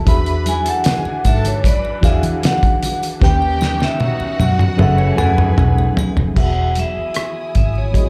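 A straight 4/4 pulse at 76 BPM sets a slow, silky groove in this lush 1970s-style soul excerpt, with a cinematic sweep that suggests a live club performance heard through the venue's PA, complete with club reverb. The cloth-damped, thuddy drum kit sits up front, with a fat snare, tight kick, dark cymbals, rim clicks and toms, and it rolls into a fill from 3.2 seconds. Beneath it, a vintage muted fingered electric bass lays down a round, foam-muted line, while very quiet congas with a thin, medium-tuned skin and a shimmering, compressed triangle fill out the percussion. A reedy electric piano with fast tremolo and slapback echo plays the accompaniment, and a muted con sordino string section holds veiled, soft-attack chords in the background until 6.4 seconds. The vibraphone, struck with medium hard mallets and colored by slow motor vibrato and slapback echo, carries a ringing, metallic melody, joined by a smooth, bowed symphonic violin section on a second line, while a slightly broken-up, lo-fi electric guitar slips in a picked riff at 4.8 seconds over chords moving from E9 through D#7alt and F#m11 to Emaj7.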